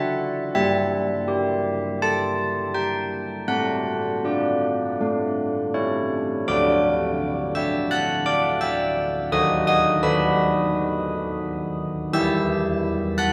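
A long, wet cathedral reverb of 6.7 seconds surrounds this recording, heard from further back in the room so the bells seem to float in a vast stone space. It is a serene yet festive classical tune for church bells in D major, moving at 83 BPM in 4/4 with uneven, freely placed beats. A solo carillon carries everything, its bronze tone colored by a minor-third overtone and the character of a worn iron clapper, sitting forward and airy across a range from D3 to F#6. The opening phrase sounds a D chord before a brief unharmonized stretch, then settles through D/A to A. From 6.5 seconds a second phrase returns to D, darkens through B7/D# and comes to rest on E minor as this fragment of a longer piece breaks off at 13.3 seconds.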